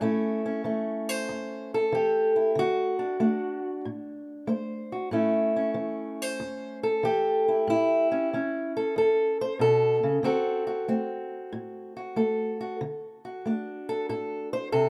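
A swung 4/4 groove at 94 BPM drives this rollicking, gritty fragment of acoustic country blues in A mixolydian. A lone fingerpicked steel-string parlour guitar with a boxy tone sits up front, moving between A7 and D7 across its roughly 15 seconds. Light studio reverb gives the rough home-demo mix a touch of space.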